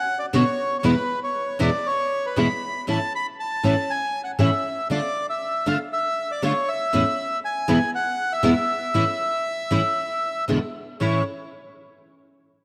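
Rubato phrasing stretches a 4/4 pulse around 118 BPM in this playful, nostalgic tango fragment in A major, cut from a longer piece. A reedy, dark bandoneon carries the melody from the very start, sitting up front with a tape echo trailing its lines in a high register. At 0.3 seconds a bright, full-bodied nylon-string guitar joins in a fingerpicked, classical style, its accompaniment reaching down into deep bass notes and coloured by an ensemble chorus. The harmony moves from Bmadd9 through E and A, takes a wistful turn to D minor, then returns through E and an E7 to settle on A at 11.0 seconds, where a brief new passage begins. A moderate plate reverb soaks the mix, giving the close, up-front pairing a dreamy, hazy glow.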